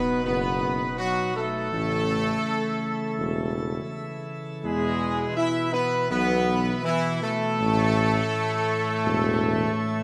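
Solemn and regal, this classical fragment sets a punchy, up-front trumpet section carrying the melody over sustained chords from a clear trombone section, a mellow French horn section in the background and a full, brilliant pipe organ plenum with mixtures, while a smooth-topped tuba holds the bass from 0.2 seconds, the three brass sections playing tight with light vibrato in a moderate scoring-stage reverb.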